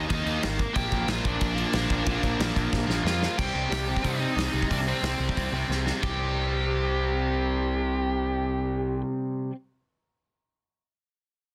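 A biting, overdriven lead guitar carries the melody from the first moment over a double-tracked, up-front rhythm guitar riff and a punchy fuzz bass, all tearing through a raw, urgent punk rock excerpt in C minor at 181 BPM. A loose indie drum kit in a small, pumping room drives the straight 4/4 with a tight kick and medium-tuned snare, throwing in fills around 2.7 and 5.7 seconds before dropping out at 6.1 seconds while the guitars and bass push on. The mix is dry, dense and heavily limited, with a bright edge on the lead guitar.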